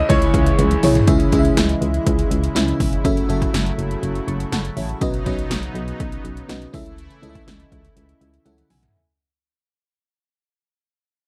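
Nostalgic and urgent, this short cut from a longer 1980s-style pop piece moves at 122 BPM in a straight 4/4 in C# minor, its chords cycling from C#m through F#m7 and Badd9 to A/C#. A brilliant baby grand piano opens with a brief melodic phrase touched with tape echo, alongside a raw, overdriven garage guitar sitting in the background that drops out by 1.6 seconds. Underneath, a lush, dreamy FM electric piano layered with a soft pad carries the accompaniment with chorus, while a brassy, detuned sawtooth analog pad holds sustained chords, its filter swelling under chorus and tremolo. A round, punchy FM bass anchors the low end, and up-front electronic drums drive everything with a punchy kick, metallic hats, overdrive and gated reverb on the snare and toms, with drum fills at 0.6 and 8.5 seconds. The mix is dry and close, and a fade-out runs from 1.1 seconds as the electric piano slips in a fill near the end.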